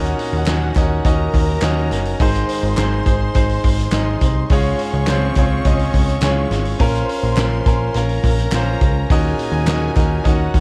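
A straight 4/4 groove at 104 BPM drives this uplifting, hopeful piano-driven pop excerpt in Db major, where a bright, brilliant concert grand carries the accompaniment over a punchy, funky analog bass with a sawtooth filter pluck, a loose indie drum kit with a fat snare and rolled-off top, a lush, bowed violin section with smooth vibrato as the second line, and very quiet, crisp group handclaps from 0.5 to 10.1 seconds, all set in a studio reverb with a dark, warm production as the chords move from Ebm7 through Ab, Dbmaj7 and Bbm back to Ebm7.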